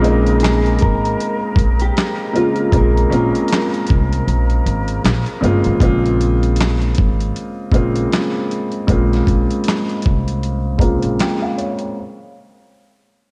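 A dreamy, reverb-soaked mix with cassette tape haze frames this hazy, nostalgic lo-fi hip hop excerpt at 78 BPM, swung on the 16ths and opening on a Bbm7 chord. Up front, an intimate upright piano with audible action noise and long sustain carries the accompaniment beside a growly pizzicato upright bass and a gritty, overdriven sampler-style drum kit of thumpy kick, medium-tuned snare, hi-hat and handclaps. Breathy flutes with unsteady vibrato hold soft chords, and a dark, clean electric guitar with chorus and tape echo plays a short melody in the background. The kick drops out from 4.3 to 5.8 s, the flutes stop at 5.8 s as a filter sweep begins on the piano, and the piano plays a fill from 10.4 s.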